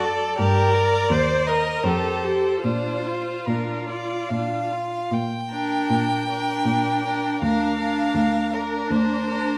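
This is a slow, romantic classical movement for string quartet, cut from a longer piece, with a solemn, yearning mood and a flexible, rubato sway in triple time. A single violin carries the melody up front with a clear, smooth, even tone, while a second violin sings a focused second line beneath it. The viola supplies accompaniment from a distant-sounding place in the blend, and the cello anchors the bass with a rich, close, up-front presence. All four players bow with vibrato throughout the roughly 9.6-second span, moving from Gm through Cm7/Eb and Fadd9 to Bb, with Bb/D arriving at 7.4 seconds during a second section that begins at 5.1 seconds. A reverberant recital-hall ambience and a vinyl crackle give the recording a worn, intimate character.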